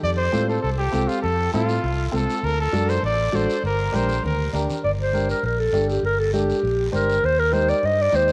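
A mellow, softly attacked clarinet takes the classical-style melody up front from 4.8 seconds, following a bright, smooth-topped trumpet solo with pop vibrato that opens this driving, danceable cumbia excerpt. Beneath them, a round, amped fingered electric bass sits forward, while high-tuned congas with thick skins play softly in the background and a raspy guiro adds texture. A woody upright piano with long sustain accompanies from 0.3 seconds, and the piano, trumpet and clarinet carry a cassette tape tone within a lush hall reverb on this home cassette recording.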